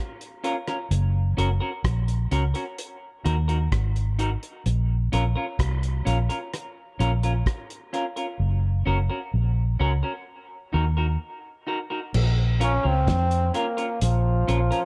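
A light reverb surrounds this heavy, deep dub reggae excerpt in Bb minor, moving at a slow 64 BPM in a straight 4/4. A cloth-damped drum kit enters first, thuddy and dry, with dark cymbals, a fat snare, a tight kick, rim clicks, hi-hat and crash, its top end rolled off. A clean, picked semi-hollow electric guitar follows in a middle register, its hollow-body tone trailed by dub echo. The vintage muted fingered bass sits up front, round, punchy and foam-muted, while the chords move through Bbm, Gb and Ebm before a break at 11.2 seconds. At 12.6 seconds a brilliant solo trombone arrives, forceful and distant in a roomy space, with light vibrato and its own dub echo.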